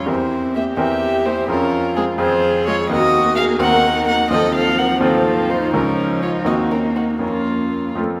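This stormy, dramatic excerpt from a quick classical-period movement for piano quintet opens with all five players together, moving in 6/8 with free rubato. Up front, a single dark violin carries the melody, its light vibrato, soft attack and airy sul tasto bowing giving it an intimate, close sound. A bright grand piano, brilliant and polished with short sustain, sits just as present in the accompaniment. Further back, a second violin and a cello, both woody and bowed sul tasto with vibrato, trace second lines, while a pure, floating viola adds close, soft-attacked accompaniment. The harmony passes through minor, seventh and half-diminished chords, and a moderate scoring-stage reverb with a 2.0-second decay lends the ensemble a roomy depth across the 8.2 seconds heard.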